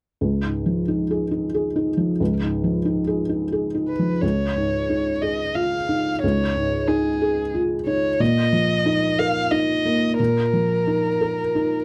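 In a rubato 3/4 at 91 BPM, this melancholic, fragile neoclassical piano-and-strings fragment opens at 0.2 s on a felt-muted upright piano, soft and dark with thick felt and audible action noise, before a single bowed, muted violin enters at 3.9 s with a veiled con sordino tone, vibrato, portamento and a slapback echo, both parts sitting up front in a dry, close 1970s-style studio sound with light reverb, tuned to A4 = 441 Hz, as the harmony moves from Dbadd9 to Bbsus4 at 8.2 s.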